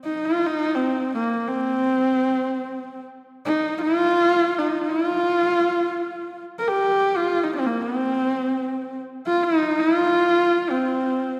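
The rhythm moves in free time, with the phrasing unbound by any steady pulse, giving this short fragment of traditional Mongolian folk music a solemn, windswept mood. A single bowed horsehead fiddle plays alone for the full 11.4 seconds, its horsehair strings ranging from Bb3 to Bb4 in the C yu mode, tuned to A4 = 439 Hz. The fiddle's tone is rich and husky, and vibrato and portamento colour its line. The instrument sits close and up front, with a focused presence. Around it, a wet concert hall reverb with a 2.2 second decay lends the sense of a church or large hall.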